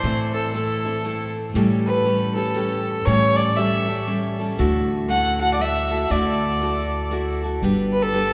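Folk in a lilting, swung 3/4 with a warm, pastoral mood, this short fragment features a reedy, gut-string fiddle soloing throughout over a bright picked steel-string acoustic guitar with audible finger squeak and a woody, thumpy pizzicato upright bass, all moving through Am, A7, Dadd9 and G inside the long, wet bloom of a cathedral-like hall.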